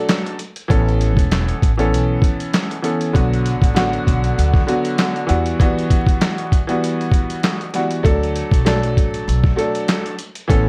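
A swung 98 BPM boom-bap groove in 4/4 drives this soulful hip-hop clip in D major. A gritty, compressed, pitched-down sampler-style kit sits up front from 0.1 seconds, with a thumpy kick, medium-tuned snare, hi-hat and handclaps carrying a roomy, re-recorded character. A clear, intimate upright piano carries the chords from the start, moving from D through Aadd9, Bm and Emadd9 back to D; it is slightly detuned, with audible action noise, long sustain and a cassette-tape, filtered coloring. A woody pizzicato upright bass with steel strings joins at 0.7 seconds, all within a dark, dry production dusted with vinyl crackle.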